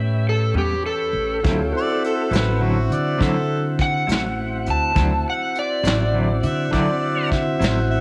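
A slow 12/8 blues at 68 BPM moves with a rollicking, swaggering strut: a woody, thumpy pizzicato upright bass sits up front from the start, while a tonewheel organ holds smooth sustained chords through a slow rotary speaker, its key click audible, as the harmony shifts from A9 to D9. An overdriven slide guitar carries the dark, up-front melody with slapback echo, a clean picked electric guitar adds accompaniment with tremolo in the background, and a vintage brush kit joins at 1.4 seconds with a punchy kick and rolled-off top. At 1.8 seconds a close-miked harmonica enters on a second line with light vibrato, scooped notes and a touch of overdrive, the performance set in a small room with light reverb and cut from a longer piece.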